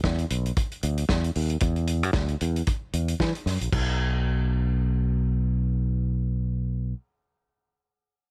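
Danceable and glamorous, this short disco excerpt with a lightly swung sixteenth-note feel pairs a bright, growly fingered electric bass with a tight, mid-forward soul drum kit of kick, snare, hi-hat and crash, whose rolled-off top sits close in a dry space until the kit stops at 3.9 seconds, leaving the up-front bass to carry on alone until 6.9 seconds.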